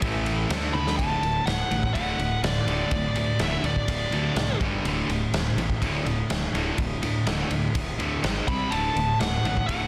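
A swaggering, energetic hard rock passage in D mixolydian at 124 BPM in a straight 4/4 opens with the whole band at once: a very quiet, gritty tonewheel organ on a slow rotary speaker with key click holds sustained chords only briefly, while two picked rhythm guitars, one crunchy and overdriven, the other bright and high-gain, sit in the background with a low riff. Beneath them, a fingered electric bass growls with fuzz, and an up-front garage drum kit of kick, snare, ride and toms sounds saturated and punchy, with a rolled-off top and a bright stone-room character. A drum fill at 0.7 seconds ushers in a dark, bluesy lead guitar whose distorted melody sits high above the band until 4.6 seconds. The lead drops out while the riff drives on, then returns at 8.5 seconds as the chords shift through G#5 and C5 back to D. Light reverb and a small-room ambience frame a dense, heavily limited modern mix, and the passage is cut from a longer piece.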